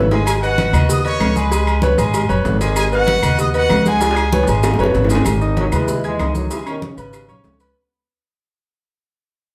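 Passionate and danceable, this short salsa cut moves at a brisk 192 BPM in a straight 4/4 in G# minor, built on G#m7 and C#5 chords. A bright, tight trumpet section with a light vibrato and soft attack carries the melody until 4.5 seconds, over a brilliant concert grand piano with deep bass and a polished, present sound. Up front, a woody, thumpy pizzicato upright bass on gut strings holds down the low end. Congas, high-tuned bongos and cowbell sit in the background, while ringing, band-limited agogo bells and timbales, grainy maracas and very quiet, dry claves fill out the percussion, with drum fills at the start and again just before the second section. From 5.6 seconds a warm trombone section with a slapback echo takes over the melody as the music fades out from 5.3 seconds, all set back in a wet studio reverb.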